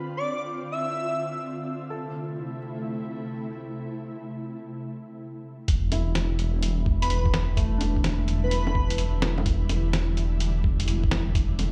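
An ethereal, warbling pad with ensemble chorus and sidechain pumping opens this melancholic, rainy future garage piece, twice joined by brief phrases from an airy, dreamy lead with tape echo and vibrato, while a soft felt-muted upright piano drifts in behind a filter sweep at 1.9 s, until at 5.7 s a menacing detuned saw bass arrives with a muffled, thumpy kick and a lo-fi sampler-style kit of bongos, hi-hat and fat snare in a swung groove, with a large bare-room reverb surrounding the mix.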